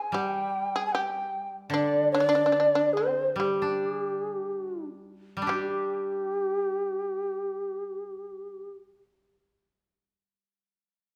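A mellow, airy shakuhachi leads this austere, calm passage of traditional Japanese chamber music, its end-blown bamboo tone carrying vibrato, tongued attacks and a chiff, with rolled-off highs and a place up front in the mix. Beneath it, a bright, buzzing shamisen plays a second line in a lower register, its plectrum-plucked, fretless sound distinctly percussive. The koto supplies accompaniment from 0.1 seconds, played with fingerpicks for a warm, dry, woody character that sits lowest in the mix. Set in 2/4 with a rubato feel and a tempo drifting between 47 and 77 BPM, the music slows from 1.7 to 5.5 seconds before moving into a new section. A moderate recital hall reverb surrounds the trio in this short fragment cut from a longer piece.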